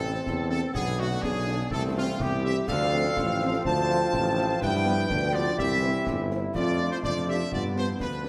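A clear trumpet section carries the melody of this festive, proud military-style march for wind band, its light vibrato and soft attack sitting present above the ensemble in a straight 2/4. Up front beneath it, a mellow tuba anchors the bass, while a distant, roomy euphonium with a warm tone adds a second line alongside a dark, tight woodwind section and a pure, hollow flute section set in the background. A dark French horn section supplies very quiet accompaniment, and a punchy, close-miked trombone section holds sustained chords at a similarly low level. Concert snare drum, concert bass drum and clash cymbals with dark cymbals stay very quiet, sounding as if in a small room. The harmony moves from A minor through diminished and D minor seventh colours toward G7 and C, and the whole cut from a longer piece lasts about 8.3 seconds, bathed in a wet scoring-stage reverb.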